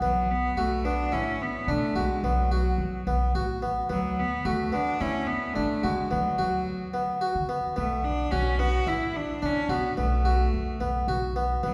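A straight 7/4 pulse drives this pensive yet urgent contemporary chamber excerpt, where a biting, nasal bowed cello carries the melody with light vibrato over airy, plucked harpsichord arpeggios and a woody, thumpy pizzicato upright bass, all sitting up front within a wet concert hall reverb.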